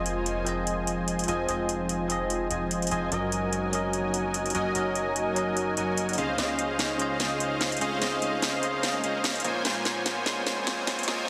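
A dense, heavily limited modern mix sits in a wet digital room, carrying a lush, bright future bass build-up, cut from a longer piece, in a swung half-time feel. Up front, a bold, detuned sawtooth polysynth with chorus and tape echo plays a riff under a filter sweep, joined by a bell-like tine electric piano with tape echo, a very quiet, ethereal pad holding sustained chords, and a fat, thick analog bass, while an overdriven trap kit with a sharp snare and metallic hats drives the groove throughout, breaking into a drum fill at 6.4 seconds. A faint riser enters at 5.2 seconds as the chords move from Fm7 through Gb6 and Dbmaj9 to Bbm9.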